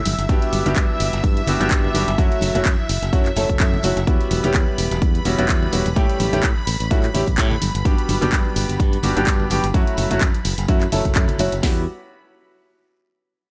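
A lush, vintage string machine opens the recording, holding high sustained chords with a slow attack, its sawtooth tone thickened by a sub octave, phaser and ensemble chorus, and sidechain pumping. This funky, groovy filtered disco house cut, taken from a longer piece, is in a drop that lasts until 11.6 seconds, with a swung sixteenth-note feel. Almost at once a bright, growly fingered electric bass arrives, direct and punchy and also pumping, alongside a layered electronic house kit of handclaps and pumping hi-hats and a very quiet, close and dry layer of tambourine and congas struck with hard hands. At 0.3 seconds a clear baby grand piano enters up front with phased, pumping accompaniment, together with a second produced house kit carrying a punchy kick, a cracking snare and warm hi-hats, the whole kit sitting up front in the mix. The harmony cycles through Gmaj7, F#m7, Em69 and A7 under a light reverb, and the string machine, percussion and first drum kit stop at 11.6 seconds as a new section begins.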